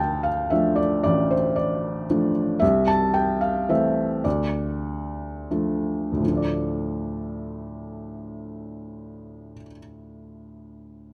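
In a rubato three-four lilt that slows between 2.6 and 6.2 seconds, this brief cut from a longer classical piece is a cool, brooding lyrical solo for a felt-muted upright piano, its boxy, intimate tone sitting up front with audible action noise under close, detailed microphones and light reverb.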